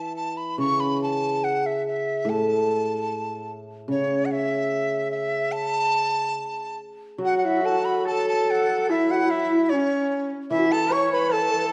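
Chinese traditional chamber music, graceful and pastoral at a rubato 73 BPM in 2/4 in an A gong mode, opens with a breathy, buzzing dizi melody up front over a shimmering, ringing hammered dulcimer, and at 7.2 seconds a clear, nasal horsehead fiddle with portamento and an airy, end-blown xiao in the background join on a second line, all set in a moderate recital hall reverb with a dark, warm production in this brief excerpt from a longer piece.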